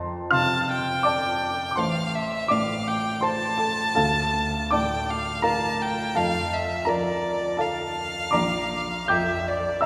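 In a flexible, rubato three-beat lilt, this lyrical romantic classical passage, cut from a longer piece, sets a clear, smooth violin melody with vibrato, close and up front, over a worn, warm-toned baby grand piano accompaniment, both carried by the long, wet reverb of a church as the harmony moves from F through Amadd11 and Dm to Gm7/Bb.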